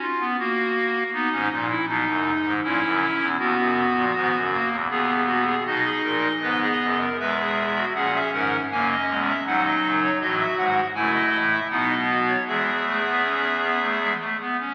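A lone pipe organ opens this short, lively baroque-style fugue, sounding its clarinet-reed solo stop in a hollow, romantically voiced tone with tremulant, placed up front. The four-part writing moves at a steady 79 BPM in 3/4 with a straight feel, spanning from D#1 up to G#5 and carrying a joyful mood. Set in B major, the harmony passes through F#7 and B/D# before a new section begins at 5.7 seconds, where chords such as E, A#m7b5 and D#m lead toward a shift into E major at 10.2 seconds. A long, wet concert-hall reverb lets each note bloom into the space. The whole passage sounds like a very old 78 rpm record, with vinyl crackle beneath the organ, and it breaks off at 14.7 seconds as a fragment of a longer piece.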